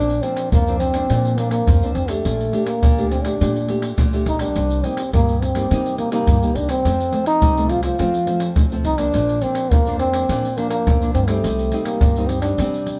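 This lively, playful samba and choro fragment opens with a mellow trombone carrying the melody up front, its jazz-style solo line coloured by light vibrato and scooped notes, over a small, thumb-plucked nylon-string guitar and a woody, thumpy pizzicato upright bass, with maracas, pandeiro and a tight surdo joining at 0.1 seconds, played close with soft hands. At 104 BPM in a straight 4/4 and Bb major, the band plays live together in a moderate stone room whose reverb lends the 13-second passage a natural airiness, as the harmony moves from Bbadd9 through Gmadd9/Bb and Cm7 to F, Bb and Cm.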